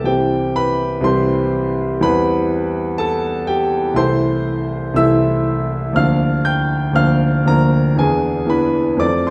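Rubato phrasing over a 121 BPM 4/4 pulse drives this stormy, passionate romantic character piece for solo piano, cut from a longer work, where a warm, natural grand piano sits up front with long sustain across a range from C2 to G6, moving from C major through C/E into A minor at 4.0 s and on through Bb/D to an E7 at 8.0 s, all bathed in a moderate scoring-stage reverb.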